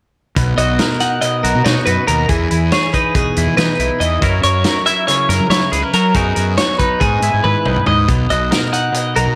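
A cut from a longer playful, intricate math rock and midwest emo piece in 9/8 opens at 0.4 s with a bright, twangy, picked twelve-string electric guitar accompaniment, a fuzz-overdriven fingered bass and a punchy, small-room indie drum kit. A second picked twelve-string guitar with spring reverb joins at 0.6 s with high, clean arpeggios over changes from Bmaj7 through Emaj7 and F#7, and the drums play a fill at 7.4 s before the return to Bmaj7.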